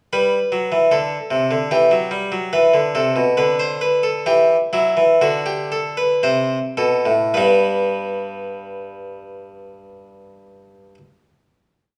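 A solo harpsichord, plucked, nasal and bright in the Flemish style, sits up front in a stately, elegant baroque-style two-part invention in G major, its two imitative voices ranging from G2 to C5 at 52-77 BPM in 4/4, slowing from the start through 9.6 seconds as the exposition moves from G through Em and G/D to D7 before settling on a final G chord at 7.3 seconds, all bathed in the wet reverb of a recital hall in this short complete piece.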